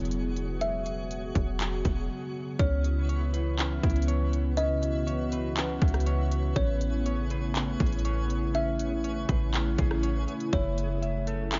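Atmospheric cloud-rap hip hop in C# minor at 121 BPM with a hazy, melancholic half-time feel, where a deep, boomy 808-style bass and a dark sawtooth analog pad with chorus and phaser sit under a twinkling granular shimmer, an up-front trap kit with a hard-clipped kick, crisp hats, handclaps and rim clicks carries 12-bit sampler grit, a woody kalimba melody echoes through digital delay from 0.6 seconds, and after a brief break a clean hollow-body electric guitar adds arpeggios with spring reverb from 2.6 seconds over chords moving from C#m7 to Amaj9 and F#m9, all in a close, dry mix with a dulled top end.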